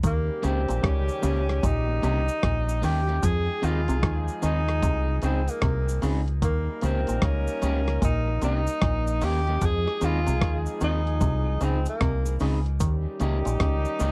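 Roots reggae at 75 BPM in 4/4 with a swung sixteenth feel, this hypnotic, serious cut from a longer piece sways between Eb7 and Fm7 throughout. A deep, round fingered electric bass sits up front, while a gritty, compressed sampler-style drum kit with a thumpy kick, hi-hat and rim click carries a tape-warm character from being re-recorded in a large room. A muted, nasal clav plays an overdriven riff in the background, and a soft cabasa adds a faint saturated shake. The tenor saxophone enters at 0.1 seconds carrying the melody with light vibrato, sounding distant and roomy under dub echo, alongside a mellow, tight horn section doubled in octaves that plays a second line, also echoed. An electric guitar at the edge of break-up joins at 0.4 seconds with picked accompaniment bathed in dub echo, and the whole mix has the dry, close feel of a 1970s studio recording.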